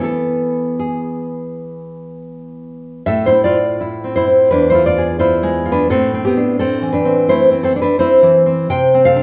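This romantic piece for solo classical guitar, in A minor, carries a passionate, melancholic mood and is cut from a longer work. It moves in 4/4 at roughly 77-88 BPM with a rubato feel, so the pulse stretches and breathes. The nylon-string guitar is fingerpicked and sits up front, with a full-bodied, deep tone from fresh strings, spanning from E2 up to G5. Finger squeaks add a human touch. The opening rests on an E chord before a new passage begins at 3.1 seconds, moving through Am, E7b9 and back to Am before settling on C5 at 8.7 seconds. A recital hall reverb wraps the instrument in the lingering ambience of a church or concert hall, with a faint mains hum beneath.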